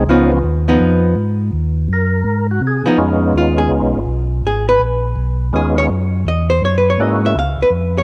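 A percussive tonewheel organ with key click and light overdrive opens this soulful, bluesy swing jazz clip at 165 BPM in Db mixolydian, soloing over a round, dark organ bass line, both voiced through chorus vibrato and a slow rotary speaker. A clean, picked hollow-body archtop guitar comps alongside from 0.1 s, then takes the solo at 3.0 s over changes moving from Db9 to Gb9 and back to Db, while the organ melody stops at 7.4 s. The sound is an up-front home cassette recording with moderate spring reverb, cut from a longer piece.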